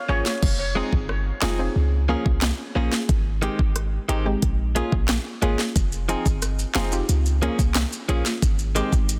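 A dense, heavily limited modern mix with light reverb carries this short dancehall cut from a longer piece, set in F minor at 90 BPM in a straight 4/4 with a bouncy, tough mood. An electronic afro-pop drum kit sits up front, its deep kick and sharp snare joined by smooth hi-hats, handclaps, rim clicks and crash cymbal. A clean, boomy 808-style bass with a sine-like tone and decaying notes anchors the low end just as prominently. Above it, a soft, round pluck with a chorus sheen and a mellow, filtered attack plays the accompaniment, while a direct-recorded clean electric guitar, picked and compressed, spins arpeggios through the Fm7, Db6, Abmaj7 and Bbm7 progression. Bright, saturated maracas slip in quietly at 5.8 s to add a final layer of shimmer.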